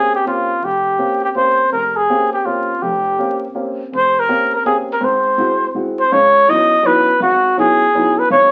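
Jazz in a swung 3/4 at 164 BPM and Bb dorian, searching and cool, with an up-front solo trumpet carrying the melody with vibrato and scooped notes over an intimate baby grand piano, whose short-sustained chords move from Bbm69 to Ab7b13 and then C#m11 at 6.1 seconds with audible action noise, heard through a wet studio reverb and the crackle of a very old 78 rpm record in this brief cut from a longer piece.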